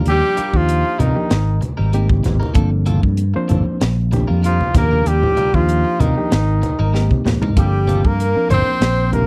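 Electric jazz fusion at 96 BPM in G minor, this short excerpt cut from a longer piece has a driving, slick feel with a light 16th-note swing. A breathy, mellow trumpet carries the melody up front with light vibrato and a slapback echo, while a clear, close-miked tenor saxophone traces a second line beneath it. A reedy, slightly out-of-tune electric piano with spring reverb supplies accompaniment through its built-in speakers, and a bright, compressed clean guitar adds picked stabs colored by analog chorus. The punchy fingered bass sits forward alongside a crisp, polished drum kit with a high-tuned snare and a punchy kick, which plays a fill from 6.9 to 7.6 seconds. Low-tuned congas join at 1.0 seconds, distant and in the background, over chords moving through Ebmaj9, Abmaj9, Gm11 and Bb6 in a dry, close 1970s-style studio sound with faint mains hum.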